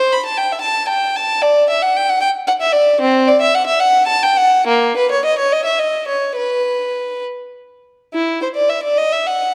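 Flowing and solemn, this short passage from a baroque-style suite movement for unaccompanied violin sits in E minor and moves in a rubato 6/8 at roughly 65-77 beats per minute, counted in dotted quarters. A single bowed violin with a rich, reedy gut-string tone plays in period style throughout its 9.5 seconds, ranging from A#3 to B5, placed close and up front. A moderate stage reverb and a dark production surround the instrument, and the opening phrase returns at 8.2 seconds before the piece is cut off.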